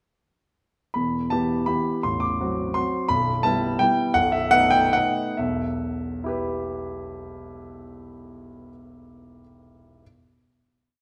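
Heard in a moderate recital-hall reverb, a clear, polished baby grand piano plays this short, wistful and elegant classical waltz in E minor alone, in 3/4 with a rubato feel between 129 and 180 BPM, its up-front single-line melody riding a waltz bass through one brief passage that slows from 2.6 to 5.4 seconds before arriving on a final E minor chord.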